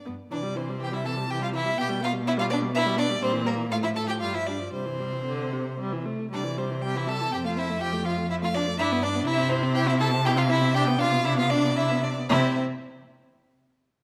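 In a quick 3/4 at 111-126 BPM, taken with rubato, this cheerful, graceful classical-period movement for string quartet in C major unfolds as a fragment of a longer piece, opening on C and turning through F and G harmonies before settling on Cmaj9 at 10.7 s and C at 12.3 s. The first violin carries the melody up front with a focused, vibrato-rich tone and smooth top, while the second violin plays an even, close second line beneath it. The dark viola fills in the accompaniment with soft attacks and expressive portamento, and the cello anchors the bass up front with a warm, gliding voice, all set in a reverberant recital hall.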